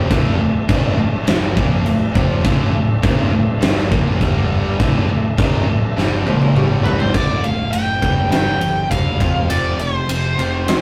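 A driving, heavy hard rock cut from a longer piece in D minor at 102 BPM opens with three picked riffing guitars (a double-tracked high-gain one, a bright scooped one and a warm one soaked in spring reverb) over a growly, round fuzz fingered bass and a huge, up-front arena drum kit with a fat snare and punchy kick, while a very quiet, gritty tonewheel organ with chorus vibrato holds sustained chords; during a drum fill, a smooth overdriven lead guitar melody enters at 6.8 s just before the organ and double-tracked guitar stop at 7.1 s, all heard through a rough rehearsal-room recording with tube saturation.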